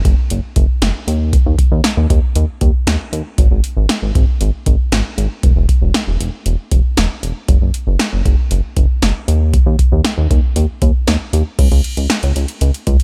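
This synth-pop excerpt moves at 117 BPM in a straight 4/4, with a nocturnal, melancholic mood. An electro analog drum machine and a chorused synth bass both play from 0.1 seconds to 13.0 seconds, sitting up front in a dry mix. The drums pair a deep kick and punchy snare with metallic hi-hats and a crash cymbal, giving the kit a tape-warm analog character. The bass ranges from E1 to D#2, blending pulse-wave and sawtooth tones with pulse-width modulation and a fast-attack filter pluck that sustains into a glossy, nasal, yet mellow retro sound. Near the end, a new section begins at 11.6 seconds before the fragment cuts off.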